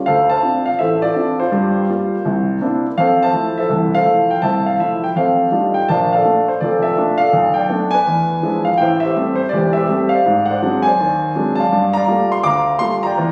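Solo jazz at a swinging 165 BPM, this relaxed, playful excerpt features an intimate, up-front grand piano with audible action noise and long sustain, moving from Dm7 through Fmaj7 into a second section that turns to Bbmaj7, E7b9 and Ab7#11 before settling on Gm9 at 11.7 seconds, all captured on a phone in a small room with moderate reverb and a faint mains hum.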